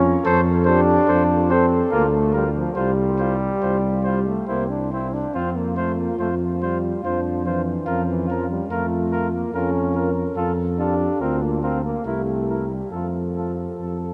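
A stately triple metre at 71 BPM moves with a straight, unhurried feel through this short classical brass quintet passage in F major, cut from a longer piece. The trombone, French horn and tuba begin together at 0.0 seconds, with the close-miked tuba up front on the bass line and the smooth-topped trombone and soft-attacked, mellow horn filling the middle. The flugelhorn slips in at 0.2 seconds as a second line, sounding distant and warm in the background. At 0.3 seconds the dark-toned trumpet takes the melody, and both the trumpet and flugelhorn carry a light vibrato. The harmony moves from F through Bb/D and a suspended C before a shadowed turn to Bbm/F, then closes on C7 to F. A vast cathedral reverb wraps the ensemble in a long, echoing space, giving the noble mood a spacious, ceremonial glow.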